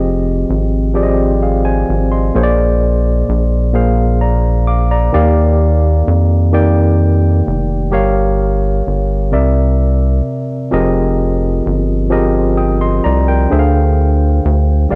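A slow six-eight pulse at 43 BPM, counted in dotted quarters with a straight feel, gives this sultry, yearning R&B fragment its unhurried sway, cut from a longer piece. A rubbery square-wave bass sits up front from start to finish, its filter pluck and fast attack giving each note a bouncy, hollow bite before it sustains dark and resonant in the low register. Over it, a tine electric piano carries the accompaniment, its clean tone worn by cassette tape and slightly out of tune, heard as if through built-in speakers. The chords move through Fm7, Bb7 and a lush Ebmaj9, then darken with Gm7b5 and C7 before settling on Fm11 at 10.7 seconds and turning to Dm7b5. The dry, close home-cassette sound keeps both parts intimate and immediate.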